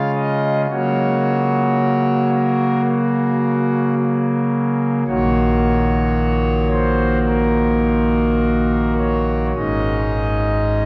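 A pipe organ opens on a D-flat chord, its foundation stops sounding thick and up front in a romantic voicing. This is a brief fragment of a classical, chorale-style piece for solo organ, reverent and majestic in mood, moving slowly at around 51-55 BPM in 4/4 with a free, rubato feel. The harmony shifts quickly to Gb/Db, settles on Ebm7/Bb at 5.1 seconds, and arrives at an Absus4 at 9.6 seconds, leaving the phrase suspended. The organ spans from a deep Ab1 up to F5, filling the low end with weight. A wet cathedral reverb with a long 5.5-second decay surrounds the instrument, letting each chord hang in a vast, resonant space until the passage breaks off at 10.9 seconds.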